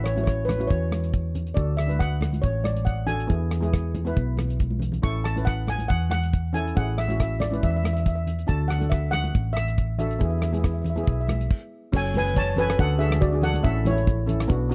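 A lightly swung sixteenth-note groove in 4/4 carries this carefree, festive calypso, cut from a longer piece and recorded dry and close in a small room with a 1970s studio character. Up front, a damped 70s drum kit with a tight kick, rolled-off top and smooth tone plays crash, hi-hat, kick and rim clicks, beside a dark, round hollow-body short-scale electric bass fingered low in its range. Congas with a thin, bright skin sit in the background. A lead steel pan plays the melody in a mellow, airy voice with soft rubber sticks, while cello pans with medium rubber sticks add a mid-forward, shimmering accompaniment beneath it. The chords move through A, D and E, with a drum fill near 4.6 seconds and a stop from 11.5 seconds, before a closing section turns to F#m and D and then resolves back to A.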